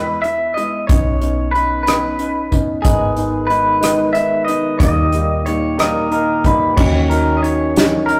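A bright, twangy clean electric guitar carries the melody up front in this melancholic, aching six-eight pop ballad excerpt, moving slowly at 61 BPM over a natural-sounding baby grand piano and a dark, round, foam-muted fingered electric bass. An acoustic drum kit played with bundle sticks joins at 0.2 seconds with crash, hi-hat, tight kick, rim click and a medium-tuned snare, and at 2.9 seconds a fat, lightly overdriven tonewheel organ with third-harmonic percussion and a stopped rotary speaker adds sustained chords. The rough rehearsal-room recording carries tube saturation and a wet stone-room reverb, with the harmony moving from E through Badd9, G#m and D# before settling on D#m7 at 6.8 seconds.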